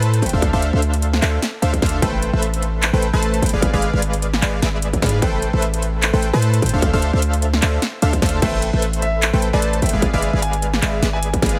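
A punchy, detuned supersaw stab riff with cassette-tape grit, delay and sidechain pumping leads this lush, bittersweet future bass piece in A minor at 150 BPM with a swung half-time feel, over a deep, boomy 808-style bass, a distorted electronic kick and a dubstep kit of huge snare, metallic hats, handclaps and crash, while a clear, intimate grand piano with dub echo enters at 8.4 seconds over chords moving from Dm9 to Am9 and E7b9/G#, all dry and heavily compressed like a radio broadcast.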